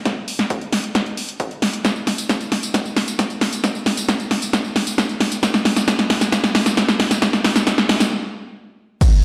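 An analog electronic kick drum and an overdriven, up-front techno kit of crash cymbal, hi-hat, snare and tambourine open this bittersweet, emotional uplifting trance build-up at 134 BPM, running a drum fill through a large, reverberant studio room before the music stops at 8.1 seconds.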